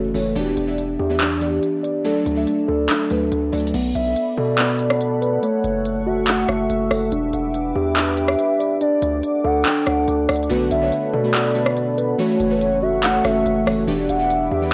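Hard-hitting yet melancholic, this half-time trap hip hop excerpt at 142 BPM in B minor rides a mellow tine electric piano playing arpeggios through analog delay, over a punchy, saturated 808-style bass and an up-front trap kit of crisp hi-hats, handclaps, rim clicks and crash cymbal. Glassy, detuned digital keys with chorus add accompaniment at the start and return at 10.5 seconds. From 4.0 seconds a smooth, gliding portamento lead with vibrato carries a second line, joined by a deep, moody analog pad holding sustained chords as the harmony cycles through Em7, D, Bm7 and F#m7 in a dry, gritty recording with light reverb.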